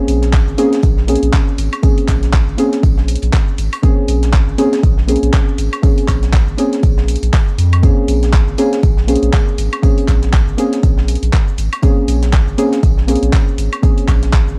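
A dark, mellow chord stab opens this smooth, deep house excerpt, its soft, full-bodied tone thickened by chorus and trailed by tape echo as it pumps against the beat on a single Bbm9 chord. A round analog bass with a nasal, filter-plucked character enters almost at once, sitting deep and sustained beneath the stabs and pumping in the same breathing way. An electronic kick drum arrives at 0.3 seconds, deep, tape-coloured and placed up front in the mix. Around it, a layered deep house kit adds cabasa, handclaps, hi-hat and woodblock with a swung, small-room feel, while a very quiet acoustic fusion kit contributes an airy, polished layer of hi-hat, a high-tuned snare and tambourine. The whole groove carries a hazy cassette ambience and runs steadily through its single section to about 14.6 seconds.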